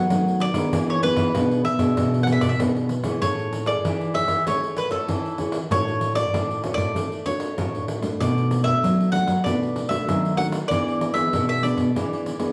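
A woody, double-strung mandolin sits up front with a picked melody in plate reverb, over a dark, thumb-plucked nylon-string guitar accompaniment and a full-bodied, thumb-plucked nylon-string bass line, joined at 0.1 seconds by a jingly pandeiro, in this playful, sunny samba and choro excerpt, heard from further back in a large, reverberant studio as the harmony settles from E7 onto Amaj7 at 3.2 seconds.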